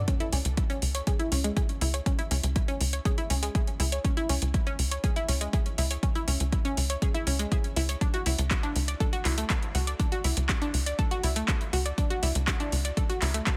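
Hypnotic and cinematic, this short melodic techno excerpt pairs a round, detuned analog pluck arpeggio, treated with chorus, phaser, delay and sidechain pumping, against a tight, nasal sequencer bass and an up-front, deep overdriven kick with metallic-hatted handclap drums, all in a dry mix as the C#m harmony drops away at 8.0 seconds.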